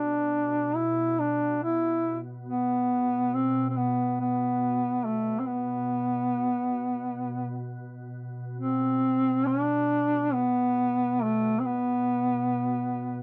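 A mellow duduk carries the melody throughout this solemn, longing Caucasian folk lament, its vibrato and scooped notes set up front yet with a distant, roomy air, moving in a free, rubato feel over a 3/4 metre. Beneath it, a soft organ-like pad holds a calm, pure drone on B2 for the whole excerpt, its slow attack and long release softened by ensemble chorus and its own reverb. The dry, close sound of a 1970s-style studio, lightly touched with reverb, frames the music, which shifts into a new section at 8.6 seconds.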